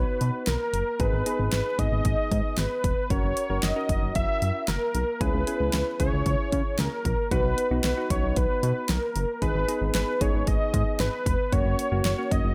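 Nostalgic and bright, this synth-pop excerpt moves at 114 BPM in F# mixolydian, with a bold, detuned unison lead carrying the melody through tape echo over soft, round electric-piano-like synth keys shimmering with chorus, a fat, wave-folded analog bass, and an up-front electronic pop drum kit with a punchy kick, fat snare and bright hats, all set in light reverb.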